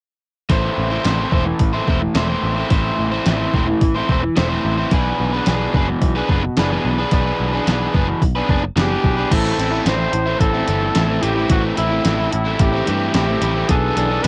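Moody and bittersweet, this short cut from a longer indie rock piece moves at 109 BPM in a straight 4/4, set in A dorian. An overdriven, double-tracked electric guitar carries the picked riff up front with a warm bite. A dark, round picked bass sits beneath it, its foam-muted tone coming through direct. A crisp 8-bit drum machine, sampler-style with a thumpy kick and fat snare, adds crash, hi-hat, kick and snare, its sound overdriven and re-recorded in a small room onto cassette. At 8.8 s a clear solo trumpet enters with pop-style vibrato, punchy yet smooth on top and also carrying a cassette tint, as the harmony moves from Am and E5 to Am7 and E7sus4 in a second section from 9.3 s. Light reverb and the homespun cassette recording give the whole piece an intimate, lo-fi character.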